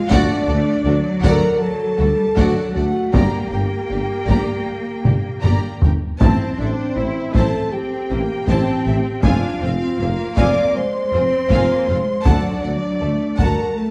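A dark, dramatic orchestral film cue at 79 BPM opens with a chamber violin section carrying the melody high above mellow French horns holding sustained chords, while a rich symphonic cello section anchors the bass. Almost at once the full ensemble is present: a lush second violin line, a focused viola section tucked in the background, a mellow tuba and a distant, very quiet double bass section joining the low end. Solo taiko drums struck with heavy sticks stand out as the loudest part, their vintage, band-limited tone giving the pulse a weighty thud, with a drum fill at 5.0 seconds. The harmony moves from D through G minor and A minor to a brooding F minor before returning to D at 12.3 seconds. Bowed strings with vibrato sit in a moderate scoring-stage reverb, and the production is dark and warm, with some lossy compression artefacts audible in this short cut from a longer piece.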